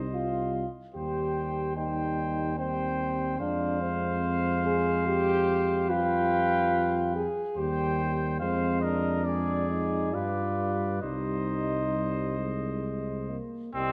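A distant, roomy French horn carries the accompaniment in this solemn, heroic passage for classical brass quintet, cut from a longer piece. It holds its place until 12.8 seconds, then drops away. Above it, a smooth-topped cornet sings the melody in a high register, while a vintage-toned trumpet traces a second line beneath. In the background a euphonium adds soft-attacked support with a light vibrato, and an up-front tuba anchors the bass with the same gentle vibrato and rounded edge. In a slow, freely breathing triple metre, the harmony moves from minor-key tonic chords through subdominant and dominant colours before settling home, all within a mellow blend that a moderate scoring-stage reverb gives a spacious, ceremonial glow.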